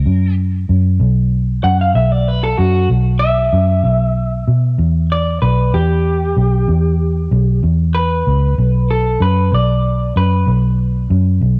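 A slightly broken-up electric guitar, played through a small old amp, adds a brooding, mournful second line to this B minor blues, entering at 1.6 seconds and ringing out until 10.5 seconds. Its fingered tone is lo-fi and compressed, colored further by a cassette-tape character, and it sits up front in the mix. Beneath it, a vintage muted fingered electric bass holds the low end from the very start, its dark, foam-muted sound round and punchy. The tempo is a slow 63 BPM in a straight 12/8, and the harmony opens on F# before settling on B5, moving to Em at 4.8 seconds and returning to Bm. With little reverb and the intimate feel of a home cassette recording, this short cut from a longer piece sounds close and unadorned.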